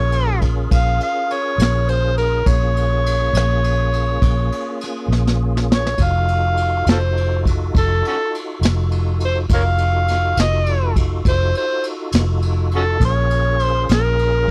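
A slow blues in 12/8 and Bb minor, this smoky, soulful excerpt moves at 68 beats per minute with a straight feel. An overdriven harmonica carries the melody up front, its gritty, amplified tone marked by light vibrato, tongue slaps and scooped notes in a jazz-inflected solo voice, with a slapback echo trailing each phrase. Beneath it, a fat, lightly overdriven tonewheel organ holds sustained chords through a slow rotary speaker and chorus vibrato, its key click audible, while a round, foam-muted electric bass sits punchy and up front. A brushed drum kit with a punchy kick, medium-tuned snare and dark ride cymbal enters at 0.1 seconds, its rolled-off top keeping it smooth, and it plays a fill from 5.1 to 6.0 seconds. The harmony shifts from Bbm7 to F7b9 at 6.0 seconds before returning to Bbm7 at 13.0 seconds, all captured in a dry, close 1970s-style studio sound.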